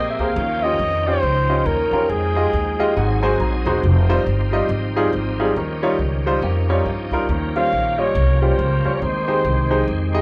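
A dark, punchy trumpet leads this uplifting, hopeful stretch of uptempo gospel, playing forceful jazz-style lines with scooped notes and a smooth top, dropping out after 3.4 seconds and returning at 7.6 seconds. The tempo is 139 BPM in 4/4 with a swung eighth-note feel. A bright tonewheel organ holds sustained chords throughout, its shouting, lightly overdriven tone colored by chorus vibrato, key click and a slow rotary speaker. Up front, a woody pizzicato upright bass on steel strings anchors the band, while a clear, worn concert grand piano with deep bass and long sustain supplies accompaniment and a fill from 2.5 to 3.8 seconds. A clean, twangy electric guitar adds a brief picked, compressed second line in the background around 6.4 seconds. The harmony moves through Eb9, Fm9, Ab7 and Eb13 before settling on Abmaj7, and the band plays live together in a large studio with moderate reverb.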